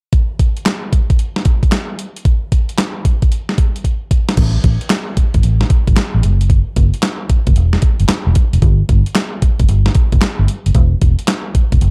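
A swung sixteenth-note groove drives this bouncy, upbeat new jack swing excerpt, as a clean 12-bit drum machine plays alone at first with a thumpy kick, medium-tuned snare, handclaps, hi-hat and crash, sounding tape-warm and up front with the roomy character of a large space. After a drum fill from 3.8 to 4.4 seconds, a vintage muted fingered electric bass joins at 4.4 seconds, its dark, round, foam-muted tone sitting low and amped alongside the beat. The production is dark and dry overall, with little reverb.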